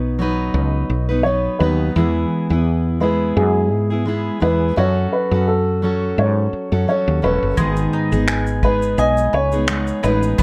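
Carefree and easy-going, this short acoustic pop excerpt moves in a lightly swung 4/4 as a full-bodied fingerpicked steel-string guitar and a round, punchy fretless electric bass sit up front, joined at 1.2 seconds by a mellow, boxy upright piano carrying the melody over chords moving from B through E and F#m to G#m. At 7.6 seconds a bowl-back mandolin adds picked double-string arpeggios while a cloth-damped drum kit brings a tight kick, finger snaps and shaker with a rolled-off top. The close, detailed recording has little reverb, giving the parts an intimate, dry presence.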